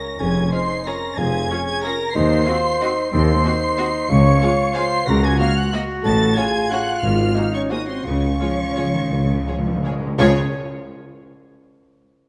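Set in a moderate scoring-stage reverb, this sweeping, festive orchestral ballroom waltz excerpt in a rubato 3/4 has a lush symphonic violin section singing the high melody over a background chamber violin section and an airy, crisp-attacked flute ensemble on second lines, a portamento-inflected viola section and a distant, roomy bassoon in the accompaniment, mellow close-miked French horns holding sustained chords, and a bass of smooth cellos, focused double basses and a punchy tuba, before calf-headed timpani enter at 7.0 s and play a fill from 8.0 s.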